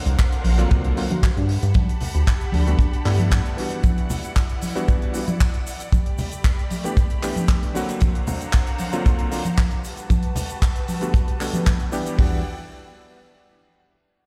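Heard through a big sound system in a bare stone room, this sensual, cosmic nu-disco excerpt moves at 115 BPM in E minor over D7alt, Gmaj9, Em9 and A9sus4 chords. A dry, up-front funk kit with a tight kick, hi-hat, handclaps and shaker is joined by close, bright congas, while a glossy, nasal synth bass appears only briefly at the start and again at the very end. A clangy electric grand piano and a lush, distant string section carrying a filter sweep both pump under sidechain and a low-pass filter, and a round, octave-layered synth lead with chorus, phaser and tape echo sits in the background from 1.1 to 3.1 s.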